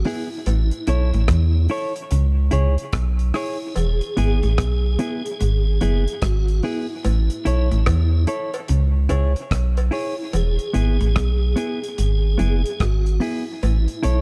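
A piping tonewheel organ with key click, chorus vibrato, fast rotary speaker and dub echo opens this sunny roots reggae excerpt, over a deep, round sub bass sitting up front and a dry, tight 70s drum kit of hi-hat, kick and rim click. Within the first second, a compressed clean electric guitar accompaniment with its own dub echo joins, along with a darker guitar riff low in the background and a close, dry cowbell. The echo-heavy mix has little reverb, with the swung groove cycling through A, C#m and E.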